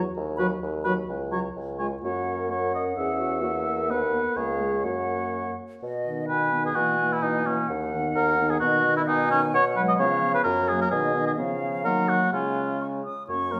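Spirited and lively, this quick classical-period wind quintet movement at 129 BPM in 2/4, tuned to A4 = 435 Hz and cut from a longer piece, sets an airy, close-miked flute melody with expressive vibrato over a punchy, smooth-topped bassoon bass from the start; at 0.4 s an up-front oboe second line enters, joined in accompaniment by a dark, distant clarinet in the background and a mellow French horn, all carried by a reverberant recital hall as the music turns from F# major to B major at 5.8 s.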